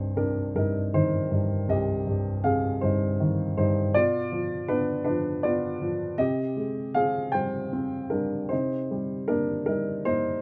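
A dark, woody upright piano plays alone for the full 10.4 seconds of this calm, lyrical classical fragment cut from a longer piece, moving in a gently rubato 6/8 through mellow, short-sustained chords across a broad range, captured up front by close, detailed microphones with a light touch of reverb.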